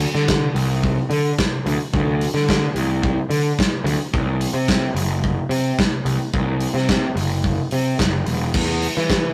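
Indie rock in a straight 4/4 at 109 BPM, this short cut from a longer piece carries a bittersweet, restless mood. A fuzz-drenched electric bass, picked and played through overdrive, sits up front with a growly, amped tone, ranging from E1 to E3 across the whole 9.3 seconds. Beside it, a big acoustic rock drum kit plays crash cymbal, hi-hat, kick and snare, with a tight kick, a medium-tuned snare and a mid-forward character whose top end is rolled off. The kit is also up front and sounds like a big room, stopping at 9.2 seconds just before the bass. The overall sound is a rough rehearsal-room take with light reverb and a warm saturation that gives the pair a raw feel.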